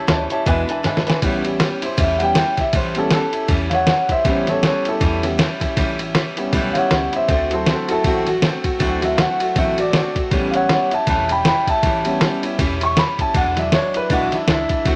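Rockabilly with an upbeat, retro swing at 158 BPM in A mixolydian, this excerpt from a longer piece brings a drum fill from 0.8 to 1.2 seconds before an intimate upright piano, present and up front with audible action noise and long sustain, takes a solo from 1.2 seconds over a bright, boxy parlour-style picked steel-string acoustic guitar with finger squeak, a dark, woody pizzicato upright bass on gut strings, and a compressed, muffled, pitched-down sampler-style drum kit with a thumpy kick and fat snare, pausing for a break at 7.1 seconds as the chords move from A7 to D7 and back, all set in light reverb.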